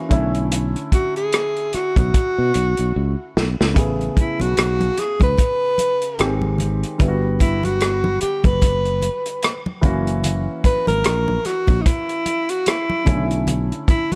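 Lush 1970s-style soul at a relaxed 74 BPM with a swung sixteenth feel, this smooth excerpt sets a breathy, whispered alto saxophone up front from 0.9 s, its soft-attack, scooped notes and vibrato sounding close and intimate over a Bm11 to Amaj9, Gmaj7 and F#7 progression. A fingered electric bass, round and up front, and a roomy soul kit with a tight kick, medium-tuned snare, rim clicks and a rolled-off top ground the groove, while a natural baby grand piano adds gentle accompaniment. After a drum fill at 2.9 s, bright, damped congas enter very quietly at 3.8 s, close and dry beneath the band.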